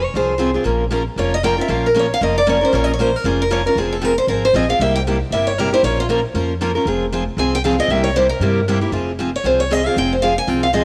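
Heard through the soft haze of a cassette home recording with light studio reverb, this fiery, swinging fragment of acoustic string swing in the jazz manouche tradition races along at 232 BPM in 4/4, with a 57% swing on the eighth notes in F minor. A picked steel-string acoustic guitar takes the lead as a soloist throughout, its boxy parlour tone bright with fresh strings and up front, carrying the melody between F4 and Ab5 with audible finger squeak. A second picked steel-string guitar joins at 0.2 seconds for accompaniment, bright and up front with a concert body and fresh strings, spanning C3 to Bb4; both guitars carry the tape's coloring. Underneath, a pizzicato upright bass on gut strings sits a little further back, woody, dark and thumpy, between F1 and G2. The harmony cycles through Fm, Bbm and C7, returning to Fm at 8.9 seconds as the opening section starts over before the cut.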